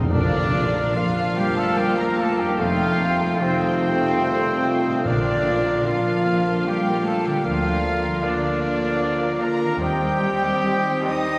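In a slow, rubato 3/4 at 74 BPM, this tender Bb major excerpt from a romantic orchestral movement sets a warm violin melody in the background over rich violins, flute, cor anglais and a distant, very quiet clarinet (entering at 0.9 s) as second lines, with smooth violas, mellow bassoon and ringing harp arpeggios beneath, dark trombones and vintage-toned French horns holding chords, punchy trumpet stabs up front, focused cellos and double basses on the bass, and hard-mallet timpani that stop at 6.2 s, all bathed in a church reverb as the harmony moves through Bb, F9, Bb/D and Cm/Eb.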